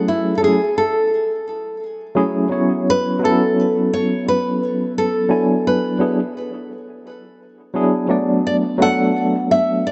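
Chillout with a warm, smooth mood: a bright, full-bodied nylon-string guitar carries the fingerpicked melody up front, touched with digital delay. A worn, slightly out-of-tune tine electric piano plays the accompaniment through a combo amp with medium tremolo and tape echo, moving through F#m9, A69, E9 and D6. The whole short cut sits in a moderate plate reverb with a dark production.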